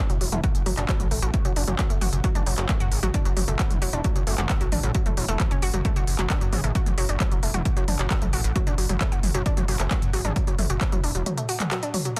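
Relentless and dark, this driving peak-time techno excerpt runs at 133 BPM in F# minor, built on a punchy, tape-warm electronic kick that enters at 0.4 seconds and a gritty, aggressive synth bass with a saturated, wave-folded growl, pumping against the sidechain from 0.1 seconds. A round, nasal analog pluck carries the riff through chorus, tube saturation, sidechain pumping and dub echo, while a layered techno kit of handclaps, smooth hats and toms pumps alongside it. The mix is dry, dense and heavily limited, with a modern master.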